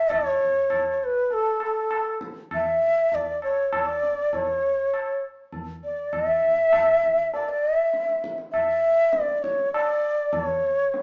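Heard through a small speaker, this recording has the feel of musicians playing live together in one room, wrapped in a wet, roomy studio reverb. It is a short excerpt of serene, meditative Hindustani classical music in a straight 5/4 metre. The bansuri carries the melody from the very start, sitting up front with an airy, bamboo tone, vibrato and tongued notes, its playing at times a little unsteady as it moves between A4 and E5. The tabla enters at 0.1 s, low-tuned and acoustic with a short ring, placed much quieter and farther back so it sounds distant, as if heard across a large room. Together the two instruments hold a calm, contemplative mood throughout this brief passage.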